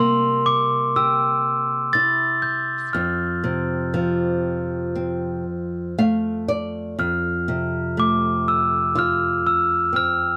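A gentle children's lullaby, this short excerpt moves at an unhurried, rubato pace with an innocent, tender mood. A glockenspiel struck with rubber mallets carries the melody up front, its bell-like tone softened into something mellow, dark and smooth. Beneath it, a fingerpicked flamenco guitar provides the accompaniment across a broad register, its acoustic sound carrying audible finger squeaks. Between 5.5 and 7.0 seconds the guitar adds a brief fill before the opening phrase returns. Close, detailed microphones and light reverb give the recording an intimate, clear presence.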